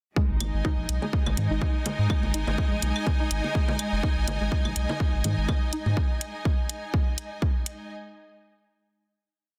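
Hypnotic and cool, this short minimal techno piece runs at 124 BPM in 4/4 with a light 16th-note swing, holding a single groove from 0.2 seconds to its close. A punchy, overdriven electronic kick sits up front in a steady four-on-the-floor pattern, joined by programmed closed hi-hats and backbeat that carry the same grit and the air of a large room. Underneath, a round, deep analog bass with a sine-like tone rolls through a staccato groove between F#1 and G#2, pumping against the kick. In the background, a twangy, string-like resonator pluck repeats a 7-step sequence that drifts against the bar, its sawtooth edge shaped by a filter sweep, a moving notch, chorus and dub echo. Bongos, claves and congas add clicks and blips in cross rhythm, while a lush, bowed studio string section with gentle vibrato lays slowly shifting chords from G#3 up to G#5, carrying through to the close at 7.9 seconds. 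The dense, heavily limited master sits in light digital ambience.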